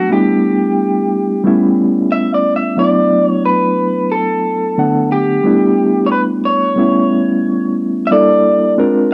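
R&B at 90 BPM with a swung sixteenth feel, sensual and relaxed, cut from a longer piece and captured as a home cassette recording in a small booth with a wet ambience. A reedy, clean electric piano with fast tremolo and plate reverb sits up front through its built-in speakers, carrying chords that move from G6 to A7 and D6, while a picked electric guitar through a small old amp plays the melody, slightly broken-up, compressed and lo-fi. A brief new section turns to Gm6 at 8.1 seconds; the guitar stops at 8.7 seconds, and the piano carries on alone to the end.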